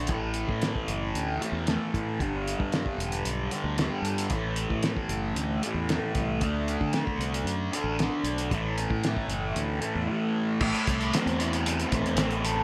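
A small, lightly reverberant room frames this dark, mysterious slice of psychedelic rock in straight 4/4. Up front, a thick, double-tracked fuzz guitar picks a phaser-tinged riff over A5, G5, Am and D5 chords, a fingered electric bass sits underneath, and a cloth-damped kit thuds along with a fat snare, tight kick and muffled dark cymbals in a gritty, rolled-off lo-fi tone. The harmony lands on Am at 10.6 seconds for a brief new section before the cut ends at 12.6 seconds.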